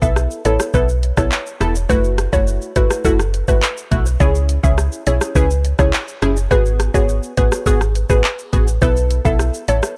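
A round, dark FM bass sits up front in this short dancehall excerpt, its fast attack giving each decaying note a punchy thump in the low register. Around it, an electronic afro-pop drum kit supplies a knocking kick, dark hi-hats, handclaps, rim clicks and shaker, all carrying a tape-warm character. A woody, mallet-like synth pluck carries the melody between G#4 and E5, its mellow FM tone warbling through chorus and analog delay. Beneath it, a vintage sawtooth chord stab with a short, filtered decay adds accompaniment colored by chorus and phaser, moving through B7sus4, F#m7, C#m and G#m7 in C# minor. The mood is sultry and hypnotic at a steady 104 BPM in a straight 4/4, and the dry, gritty sound keeps every part close and present across the ten seconds.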